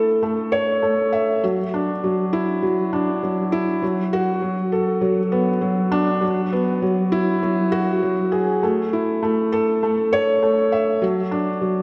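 A felt-muted upright piano carries this brief electronica passage alone from start to finish, its soft, intimate tone sitting up front with the thin felt and audible action noise lending it a vintage character. Set in A major at 100 BPM in a straight 4/4, the piano moves between F#3 and E5, and the mood feels luminous and hopeful. The opening stretch builds up until 8.6 seconds, where a drop arrives and a new section carries the piece through to 11.8 seconds. A wet scoring stage reverb with a 1.9-second decay surrounds the instrument, giving the close, mellow sound a generous sense of space. The clip is cut from a longer piece.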